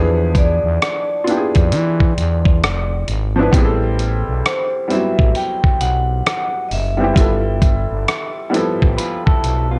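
A growling, thick FM bass sits up front in this reflective, hazy lo-fi hip hop excerpt at 66 BPM in E minor, swung on the sixteenths, under a felt-muted upright piano with a soft, intimate, vintage tone and a gritty sampler-style drum kit of thumpy kick, hi-hat and rim click that enters at 0.3 s. A bright, ringing vibraphone played with medium hard mallets and a slow motor vibrato carries the melody until 8.5 s, and at 9.0 s a dark, slightly broken-up electric guitar through a small old amp adds a brief second line. The chords move from E7b9 to Am9 to G13, with little reverb and a cassette-tape haze over the mix.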